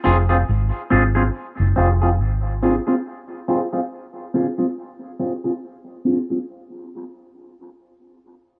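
A slow, swung sixteenth-note groove in 4/4 gives this short reggae fragment, cut from a longer piece, a hypnotic and heavy feel over a single F minor chord. An up-front, twangy electric guitar at the edge of break-up carries the accompaniment throughout, coloured by phaser, a low-pass filter sweep and dub echo. A dark, round, foam-muted vintage bass sits up front in the low register from 0.1 to 2.8 seconds, all within a studio reverb.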